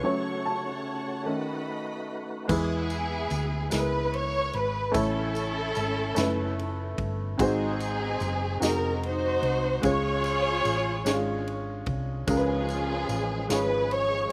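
Solemn and fervent, this slow gospel excerpt moves in a straight 6/8 at 49 BPM, cut from a longer piece and tuned slightly under standard pitch. It opens with a short upright piano solo, woody and slightly detuned with a slapback echo, over sustained chords from a lush, focused string section and a fat, lightly overdriven tonewheel organ with key click, chorus vibrato and a slow rotary speaker. At 2.5 s the band enters: an up-front string section carries the melody with expressive vibrato and portamento and its own slapback echo, while a round, punchy hollow-body short-scale electric bass anchors the low end. A natural big-band drum kit with dark cymbals, a medium-tuned snare and a punchy kick joins, along with a jingly, band-limited vintage tambourine sitting in the background. The organ returns at 12.3 s as the harmony moves from E through A and G#7 to C#, and the dry sound carries little reverb.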